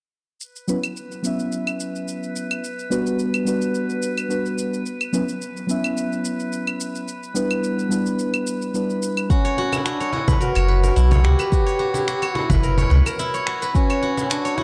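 Hypnotic and earthy, this organic downtempo excerpt at 108 BPM in F# phrygian dominant opens with electronic shaker, claves and finger snaps, soon joined by soft, muted felt-like synth keys carrying gritty sampler texture, pumping and tape echo and by a calm, glassy harmonics texture. At 9.3 seconds a mellow, vibrato-laden duduk melody and silvery, fingerpicked steel-string zither arpeggios take over alongside a deep up-front electronic kick, followed by a woody, distant cajon and later a round, dark analog bass, all set in a moderate concert-hall reverb.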